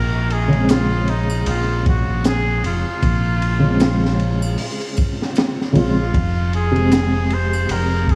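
A swung 77 BPM trip hop groove in Bb minor sets a brooding, cinematic mood, as a round, up-front dub bass with tube saturation anchors gritty, punchy breakbeat drums entering at 0.3 s, a felt-muted upright piano with tremolo and audible action noise joins at 0.5 s, very quiet maracas and triangle arrive at 0.7 s, and a nasal, breathy straight-muted trumpet carries the melody through tape echo, all in a dreamy, reverb-soaked mix with vinyl crackle, moving from Bbm7 to Fm.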